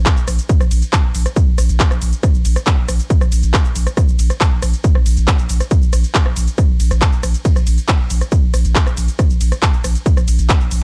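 Hypnotic and intense, this short excerpt of driving peak-time techno holds a straight 4/4 pulse from start to finish. A heavy electronic kick drum sits up front, layered and tape-warm with the character of a re-recording in a small room. Around it, a techno drum kit adds handclaps, smooth hats, ride cymbal, rim click and shaker, set lower in the mix and sharing that small-room tape character. Underneath, a saturated sub bass reaching down to Bb1 gives a deep, thick sine tone with a fast attack and sustained notes, pushed through overdrive and a low-pass filter and pumping against the sidechain. The sound is dry and gritty, like a hardware recording with little reverb, keeping the groove tight and physical across its 10.8 seconds.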